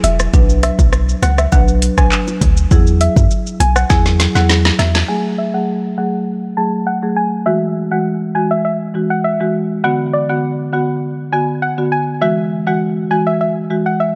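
The sound is dry and close, with little reverb, and the mix is loud for this short excerpt from a longer dancehall track, which moves at 101 BPM in a straight 4/4 with a tough, bouncy mood. An up-front electronic afro-pop kit pairs a deep kick and woody snare with metallic hi-hats, handclaps, rim clicks and shaker, all roughened by vintage 12-bit sampler grit, while a boomy, sine-toned 808-style bass attacks fast and decays into darkness beneath it, and low-tuned bongos played with soft hands sit very quietly in the background. A marimba struck with medium mallets enters at 0.3 seconds, its padauk bars sounding boxy and close in a small room as a low-pass filter and sidechain pumping shape its chords through Bm and Eadd9. Above it, a soft, round pluck built from detuned triangle, sine and sawtooth layers with a touch of noise carries the melody, colored by chorus and darkened by a low-pass filter. 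After a drum fill starting at 3.9 seconds, the kit, bass and bongos drop away around 5 seconds, leaving the marimba and pluck to float over F#madd9, Eadd9 and Bm while a filter sweep runs to the end.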